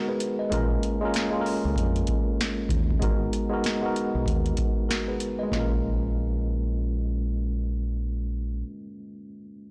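A swung boom-bap groove in 4/4 drives this moody, reflective hip-hop fragment, cut from a longer piece. A worn, slightly out-of-tune tine electric piano opens at 0.0 s, heard as if through built-in speakers, with a cassette-tape character and filtering that trims both the lows and the highs. It moves between Abm7 and Bbm7 chords. A booming analog drum machine joins almost at once, with a deep kick, crisp snare and metallic hi-hats, all tape-warm and up front, and it drops out at 5.7 s. A dark, round, punchy fingered dub bass, direct and amped with transformer saturation, enters at 0.5 s and anchors the low end. The whole recording sits in a digital ambience and sounds blown-out and overdriven, giving the introspective mood a gritty, saturated edge.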